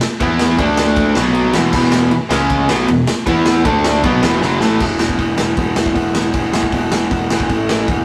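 A rough, tube-saturated rehearsal-room recording with a small room's reverb carries this rowdy, energetic punk rock excerpt at 156 BPM in 4/4, where a gritty, punchy raw garage drum kit with a pumping stone-room sound drives a bright cranked stack guitar and a dark, compressed overdriven electric guitar through E5, D5, B5 and C#5 chords, the stack guitar dropping out at 4.8 seconds just after a drum fill starting at 4.4 seconds, while a growly fuzz picked electric bass sits beneath them.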